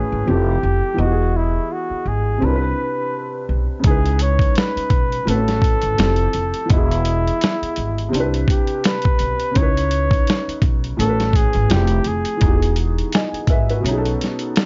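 A mellow flugelhorn melody with light vibrato and scooped notes opens over a boxy, felt-muted upright piano and a woody, growly pizzicato upright bass in this cosy lo-fi hip hop piece in E major at 84 BPM with a lazy swing, before a gritty, compressed sampler-style soul drum kit with a thumpy kick enters at 3.8 seconds; the harmony drifts through lush seventh chords such as Fmaj7, Emaj7 and C#m7, and the whole mix has a soft cassette-tape haze, with the kick dropping out at 13.8 seconds as the section settles on a closing B7.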